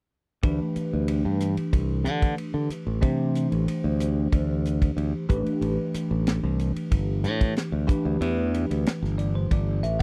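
A tight funk drum kit with a high-tuned snare, a tight kick, hi-hat and ride cymbal starts at 0.4 seconds alongside a growly fingered electric bass and a bell-like tine electric piano washed in phaser, in a slick, soaring stretch of electric jazz fusion cut from a longer piece. The piano's clean voicings move from D9sus4 to A9sus4 at 5.3 seconds over a straight 4/4 groove, with drums and bass sitting up front in a dry, close 1970s-style studio sound. The electric piano plays a fill from 8.9 seconds to the end.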